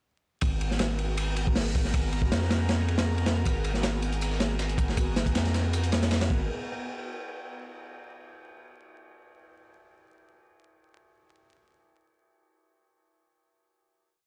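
Dark, atmospheric drum and bass with a jungle edge, this short piece drops in almost immediately at 0.4 seconds on a single G#m9 chord that holds until 6.5 seconds. A crunchy, heavily chopped breakbeat kit sits up front, its saturated acoustic sound carrying dark cymbals, a medium-tuned snare and a tight kick under a rolled-off top. Beneath it, a thick sine sub bass with tube saturation holds long, deep notes, while an airy, breathy pad with chorus and phaser sustains soft, detuned chords. At 1.7 seconds a glassy texture of drifting overtones joins in the background on a held high note, bathed in chorus and its own reverb. From 3.5 seconds a dusty, sampler-style kit adds a fat snare, hi-hat and tambourine as a looped, edited break re-recorded in a large room, high-pass filtered and tucked behind the main drums. The dry, gritty recording carries vinyl crackle and studio reverb, and the piece closes on a final hit.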